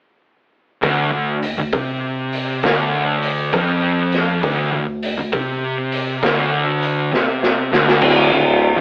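Stoner and doom metal with a brooding, hypnotic swung feel, where two thick, dark fuzz guitars grind a low riff on D minor over a raw garage drum kit with a boomy kick, dark cymbals and a gritty, saturated small-room sound that rolls into a fill at 7.1 seconds, before a clear tuba with light vibrato and scooped notes enters on a single low note at 8.0 seconds, all captured as a rough rehearsal-room recording with a telephone-like tone and light reverb.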